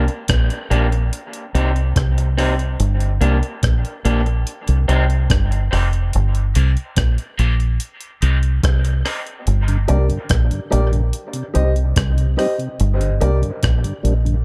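Dub reggae in G minor at 72 BPM, deep and meditative, this excerpt opens on a break where a foam-muted, punchy fingered bass and a gritty, compressed breakbeat kit with a thumpy kick, hi-hat and rim click sit up front beneath a slightly broken-up picked electric guitar through a small old amp, high-pass filtered and soaked in dub echo, with a filter sweep running from 2.8 to 9.5 seconds. At 6.3 seconds a mellow tonewheel organ enters with key click, chorus vibrato and slow rotary speaker, joined by woody, slightly detuned stabs from a boxy upright piano, both filtered and echoed, while the guitar stops at 9.2 seconds. The harmony rocks between Gm and Cm throughout, in an echo-heavy mix with light reverb.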